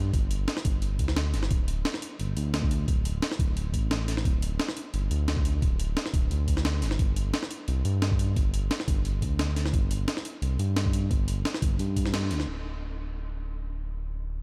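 Dreamy and soulful, this liquid drum and bass excerpt moves at 175 BPM in a straight 4/4, cut from a longer piece. A smooth synth bass blending sawtooth and triangle tones sits up front, its fast attack giving way to mellow, sustained notes between D1 and G2 that carry on to the close. A breakbeat sampler-style kit of hi-hat and a high-tuned snare, paired with a thumpy electronic kick, is compressed, pitched up and gritty, and sounds re-recorded in a large room. The opening stretch plays as a drop, with a band accent at 12.1 seconds; the kick stops at 12.0 seconds and the kit at 12.5 seconds, leaving the bass to finish alone. A light reverb gives the mix a soft sense of space.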